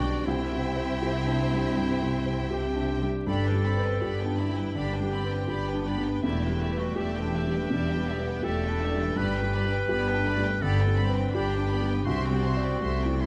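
Rubato in 4/4, this hopeful, uplifting orchestral film-score excerpt sets a distant, lush violin section singing the high melody over a second violin line and a bright, soft-attacked clarinet. A felt-muted upright piano with audible action noise, a focused viola section and very quiet thumb-plucked harp arpeggios provide accompaniment, while cello and double bass sections, with vibrato and cello portamento, anchor a Cadd9–G–Em7–G progression, all bathed in moderate scoring-stage reverb.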